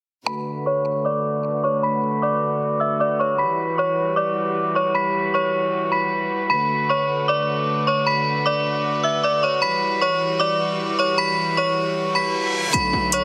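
Brooding and hard-hitting, this half-time trap excerpt opens at 0.3 seconds with a metallic, warbling FM bell melody, chorused and tape-echoed up front, over sustained chords from a biting, earthy chamber string section, both low-pass filtered as a filter sweep runs beneath them over a Bm7 to Emadd9 progression. A reverse cymbal rises in at 12.1 seconds, and at 12.7 seconds a heavy, saturated 808-style bass and overdriven metallic electronic hi-hats hit together on a return to Bm7. The whole mix carries light digital reverb and a heavily compressed, radio-like sheen.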